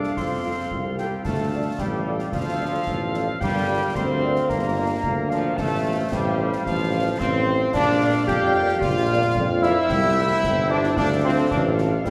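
A spirited, festive military-style march for wind band in 2/4 at 111 BPM in F major opens with up-front, bright trombone chords and a present, warm tuba bass beneath a mellow, distant, very quiet trumpet melody. A background woodwind section and a pure, close-miked wooden piccolo, tongued and played with vibrato, carry the second line, plus concert snare drum, concert bass drum and dark clash cymbals. A dark French horn section joins at 0.4 seconds, the whole ensemble carried by the long, wet reverb of a church or concert hall in this passage cut from a longer piece.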